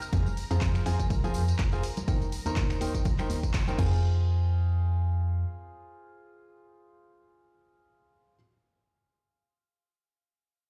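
A bittersweet, energetic piano house drop at 123 BPM in F minor opens with a silky, wave-folded analog string pad with ensemble chorus and sidechain pumping in the background, dry analog drum-machine hits and close, bright tambourine and congas; at 0.1 s a punchy, up-front electronic kick, a hollow, organ-like FM bass with sidechain pumping, and a brilliant baby grand piano riff with dub echo and audible action noise join in, moving from Fm to Eb6 and back. A band accent lands at 3.5 s, and after 4.0 s the piano and bass carry on alone in a big, reverberant bare room.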